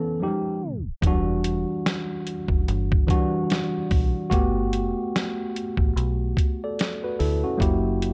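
Heard through cassette-tape haze with light digital reverb, this melancholic, nostalgic lo-fi hip hop excerpt at 73 BPM in E dorian opens on a worn, slightly out-of-tune tine electric piano, up front under a filter sweep, before a tape stop at 0.6 s gives way at 1.0 s to a muffled, pitched-down sampler drum kit with a thumpy kick and 12-bit grit and a dark, round, foam-muted dub bass beneath swung chords moving from Em9 through Gmaj9 to F#7b9.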